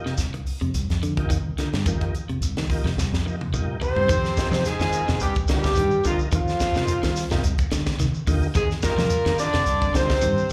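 A smooth tonewheel organ opens this intense, hypnotic afrobeat excerpt at 0.0 seconds, sitting in the background with a slow rotary speaker, chorus vibrato and slapback echo. At once a slightly broken-up electric guitar picks arpeggios, a dark, round fingered bass anchors the low end, and a tight funk kit, its snare tuned high and its kick tight, joins a grainy, mellow, vintage-sounding shekere. The groove moves at 108 BPM in 4/4 with a light sixteenth-note swing in F dorian, cycling between F5 and Cm11 chords with a turn to Fm7. After a drum fill starting at 3.0 seconds, a close-miked horn section takes the melody at 3.8 seconds, tight and up front with light vibrato, while a bright baritone saxophone and a brilliant, forceful trombone add punchy second lines further back. Slapback echo touches the guitar, drums, shekere and horns, and the whole band is heard as a live gig through a club PA, with small-room ambience and club reverb.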